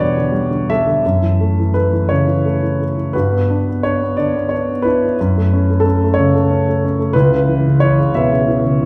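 A dark concert grand piano plays alone from the first moment, opening this short classical excerpt cut from a longer piece with a reflective, wistful solo in 6/8. The tempo sits around 56-61 BPM counted in dotted quarters, and the rubato feel lets the phrasing breathe freely. The piano's tone is mellow and intimate, with deep bass reaching down to C#2 and a melody reaching as high as E5, while the sound of the instrument's action can be heard close up. Harmonies drift from Em7 through F#m7 and Gmaj7, back to F#m7, before settling on C#m7 near 7.1 seconds, giving the passage a gently unresolved, longing quality. The instrument sits up front in a church or concert hall, surrounded by a lush recital-hall reverb with a 1.5-second decay, and the whole passage lasts just under 9 seconds.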